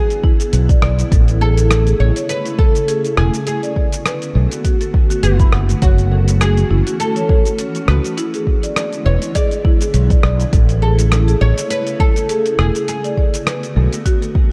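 Organic downtempo with an earthy, warm mood and a gently swung feel, this excerpt cut from a longer piece sets a plectrum-plucked oud melody, deep and double-strung under tape echo, over a woody marimba arpeggio with delay and a cloudy, evolving granular pad whose sustained chords pump with the sidechain. Underneath, a deep, layered electronic kick and a punchy, bright fretless electric bass with lush chorus sit up front, while a gritty, compressed sampler-style kit adds hi-hat, rim click and shaker. The harmony moves through seventh chords such as E7, Amaj7, Bm7 and F#m7 in a dark, dry production.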